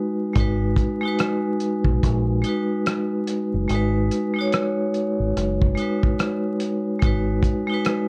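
A ringing, metallic vibraphone struck with hard mallets opens alone, its fast motor vibrato set in a boxy small room, before a dark, round fingered dub bass and a cloth-damped, thuddy drum kit of tight kick, hi-hat and rim click join at 0.4 seconds. This nostalgic, melancholic lo-fi hip hop fragment sits at 72 BPM in G# minor with a swung 16th-note feel, resting on a G#m7 chord as the bass drops out at 7.4 seconds. The drums carry a rolled-off top and 12-bit sampler grit, and the whole mix is coloured by worn, warbling cassette tape, vinyl crackle, pitch drift and light reverb.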